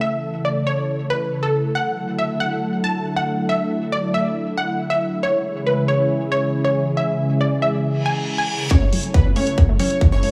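A punchy, detuned sawtooth pluck carries the melody up front in this soaring, driving uplifting trance excerpt at 138 BPM in F# minor, its fast-attack notes pumping and trailing tape echo over a thick, chorused pad that moves from A through Dadd9 and C#m to F#m7 in a small, lightly reverberant room. A reverse cymbal and riser rise at 8.0 seconds, and from 8.7 seconds a build-up brings in a punchy, up-front electronic kick, layered electronic hi-hats, a sawtooth supersaw stab as a second line, and a bright, warbling, cassette-tinged pluck arpeggio in the background.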